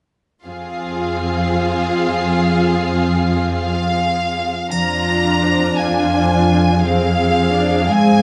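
At 0.5 s a sorrowful string texture opens on an Fm chord: dark, woody cellos hold the bass from a distant placement, violas fill the middle with smooth, even bowing, and an expressive violin section carries a second line with portamento and vibrato. This cinematic film score moves at a slow, rubato 57 BPM in 6/8, in F dorian, with a longing mood. At 3.6 s a rich, focused violin section takes up the melody in a higher register, sitting up front in the mix. From 4.7 s a concert harp adds ringing, fingerpicked arpeggios, and a triangle sounds faintly in the background for a brief moment. The lush ensemble is captured with close, detailed microphones and light reverb, and the passage is cut from a longer piece.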